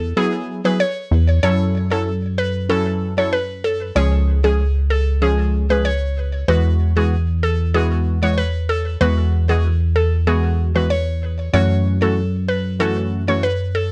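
A punchy, funky analog bass opens this tough, sultry dancehall excerpt at 95 BPM in F# minor, its wave-folded tone sitting dark and up front. From 0.2 seconds a woody, round mallet-like synth pluck carries the melody with chorus and digital delay, while a nasal, detuned synth brass stab with chorus fills in the harmony over chords moving from Eadd9 through F#m7 and C#. The production is dark and warm, with a light reverb around the parts.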